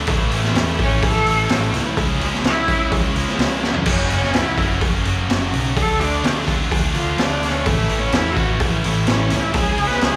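A bright, bowed cello solo with vibrato, focused yet distant and carried by slapback and tape echo, sings over a dark, angsty stretch of quiet-loud alternative rock cut from a longer live club set. An overdriven picked bass holds down the low end, a biting double-tracked overdriven guitar and a high-gain distorted guitar play riffs in the background, and a very quiet, tight distorted guitar adds a further riff, while an up-front raw garage drum kit with a boomy kick, high-tuned snare and gritty, saturated tone drops in a fill at 3.6 seconds.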